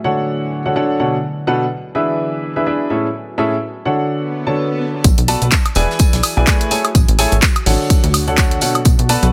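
A clear, woody upright piano with tape echo and sidechain pumping carries a euphoric, uplifting piano house riff at 126 BPM in A major over a deep, moody detuned pad in the background, then an electronic swell at 4.2 seconds leads into a drop at 5.0 seconds, where a punchy electronic kick, a funky filter-plucked analog bass with tube saturation, a house kit of handclaps, hi-hat and woodblock, and a dry, airy 70s kit of hi-hat, snare and tambourine in the background join the Dmaj7, Bm7, E7 and Amaj7 progression.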